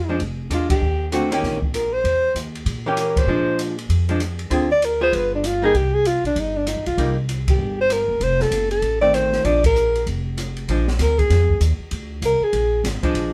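A warm alto saxophone leads this sophisticated small-group swing and bop excerpt in Bb mixolydian at 194 BPM, its light vibrato and scooped notes up front over a woody, thumpy pizzicato upright bass and a dark, clean, picked hollow-body archtop guitar, with an open jazz drum kit offering a high-tuned snare, boomy kick, ride cymbal, hi-hat and rim clicks. The band hits accents at 0.7, 3.1, 7.4 and 9.6 seconds, and the saxophone takes a solo from 10.7 seconds, shortly before the guitar drops out near 10.9 seconds. The group plays live in one studio room with moderate reverb, giving the performance a warm feel.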